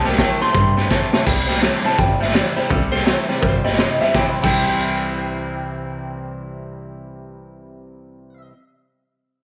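A small room's light reverb surrounds this short rockabilly excerpt, an upbeat, rollicking number in C major that swings its eighth notes at 167 BPM. Up front, a raw garage drum kit plays with a punchy kick, a medium-tuned snare, hi-hat and crash, its saturated, gritty sound rolled off at the top; it drops a fill from 0.9 to 1.3 seconds and stops at 4.5 seconds. The upright bass is plucked on gut strings, thumpy and woody. A clean, twangy electric guitar plays a riff, and a second electric guitar leads the melody through a small old amp, slightly broken-up and trailed by tape echo. Tucked behind them, a bright, full-bodied steel-string acoustic guitar adds picked accompaniment, while a very quiet, dark upright piano, slightly detuned and mellow, lets its long sustain and audible action noise lend an intimate touch.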